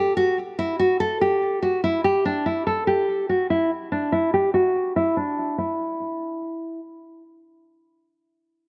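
Hip hop at 144 BPM in 4/4 with a half-time feel, this short cut from a longer piece sits in E minor and carries an eerie, melancholic mood. The only part is a nylon-string guitar playing the melody between D4 and A4, fingerpicked with an acoustic, full-bodied, deep classical tone placed up front in the mix. A low-pass filter and digital delay shape the guitar, and a filter sweep runs across it from the start until 5.6 seconds. The guitar plays from 0.0 to 6.8 seconds, carrying through the opening section and into the next, which begins at 5.6 seconds. Light reverb and a small room ambience surround the recording.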